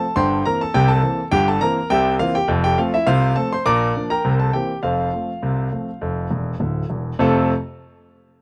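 A dry, close recording in a small room gives this 1970s-style studio sound an intimate, up-front quality, with the piano's action noise clearly audible. It is a short, lively and cheerful ragtime excerpt for solo concert grand piano in F major, moving at 103 BPM in a straight 2/4. The warm instrument covers a range from D1 to D6, with a deep bass and a polished, present tone. The harmony opens on C7/G and settles through F, Bb and C7 before returning to F at 4.8 seconds. A piano fill from 6.3 to 7.2 seconds leads into a new section, and the piano sounds until 7.5 seconds in this clip cut from a longer piece.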